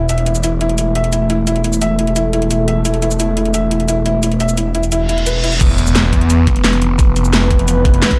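Dark technical drum and bass at 174 BPM in 4/4, futuristic and tense, cut from a longer piece. A sweeping, resonant pad holds sustained chords with subtle chorus and sidechain pumping, a felt-muted upright piano with audible action noise plays mellow arpeggios through delay until 5.5 s, and a thick, swirling detuned saw bass with phaser and overdrive sits up front beneath a dubstep kit of huge snare, metallic hats, cabasa and crash. A reverse cymbal rises into the drop at 5.6 s, where an impact lands and a knocking electronic kick enters, all under a light reverb.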